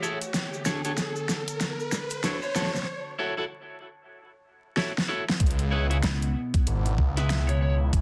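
A swirling, thick phased saw bass and a knocking, overdriven electronic kick hit up front at the drop at 5.4 seconds in this swaggering, gritty glitch hop excerpt at 95 BPM with a swung feel, following a build-up where a grainy cabasa and an electronic riser run until 2.9 seconds over a warbly, nostalgic tape-like pad, twangy clean electric guitar stabs, a dark lead guitar through a small cranked amp with dub echo, and a dubstep kit with a huge snare, while a punchy, foam-muted thumbed slap bass enters briefly at 6.0 seconds, with vinyl crackle over a dense, heavily limited master.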